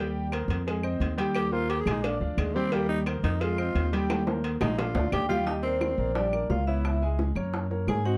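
A lively, danceable 175 BPM groove in straight 4/4 drives this Afro-Cuban jazz excerpt in Eb major, with thumpy pizzicato upright bass up front, round, low-tuned cowbell and bongos played with soft hands, and woody claves tucked close and dry in the background. A clear concert grand piano comps with deep bass, and a raspy, growling tenor saxophone enters at 1.4 seconds with gritty jazz phrasing and light vibrato. At 5.1 seconds a metallic, ringing vibraphone with medium hard mallets and slow motor vibrato takes the melody over the shift to Ebmaj7, Dbm7 and Gbadd9, all set in a dark production with light reverb.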